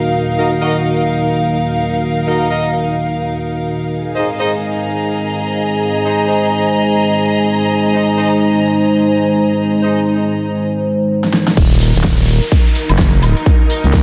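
A growling, thick FM bass lands up front at 11.6 seconds, pumping against a punchy electronic kick as this bouncy, gritty bass house excerpt in Eb dorian drops at 127 BPM with a 16th-note swing. From the start, a dark analog pad built from detuned, wave-folded oscillators holds moody sustained chords from Ebm to Ab, treated with lush chorus, sidechain pumping and a filter sweep. Alongside it, a chamber string section plays a soft, sul tasto texture with light vibrato, while a jazz-style horn section adds filtered, delayed stabs that pump in time and fall away at 10.0 seconds. A big-room drum kit with an overdriven, huge snare, hi-hat, tambourine, woodblock and crash enters with a fill at 11.2 seconds, and an electronic downlifter sits quietly under the drop as the harmony returns to Ebm. The whole mix is dreamy and soaked in hall reverb, giving the grit a cavernous glow.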